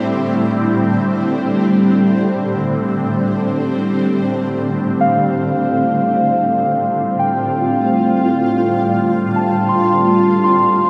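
A bright, shimmering ambient pad sits up front in this luminous, serene excerpt. Its detuned unison triangle tones carry an ethereal octave-up shimmer and a granular texture, with slow attacks and long releases sustaining chords through chorus, phaser, built-in reverb and shimmer reverb. The harmony holds on C before moving to F at 4.5 seconds. At 5.0 seconds, muted, felt-like synth keys enter high above with soft, intimate arpeggios; their triangle and sawtooth tones, layered with noise, strike with a fast attack and then decay into a dark glow through chorus, analog delay and shimmer reverb. A lush hall reverb soaks the whole mix, giving the calm, unhurried piece a dreamy sense of space.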